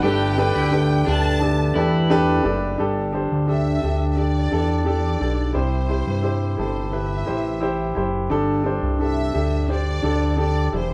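Uplifting and hopeful, this pop excerpt moves at 87 BPM in G major, with a lush bowed violin section carrying an expressive, vibrato-rich melody over a clear, intimate concert grand piano whose action noise and long sustain sit up front. A fat, detuned analog sawtooth bass with a filter sweep anchors the low end, while a crunchy, bright overdriven electric guitar riff drops out at 2.1 seconds and a reedy, breathing harmonium holds soft chords until 2.8 seconds. The band sounds like it is playing live together in one room, with a wet studio reverb, as the harmony moves from Gadd9 through Gsus2 and C.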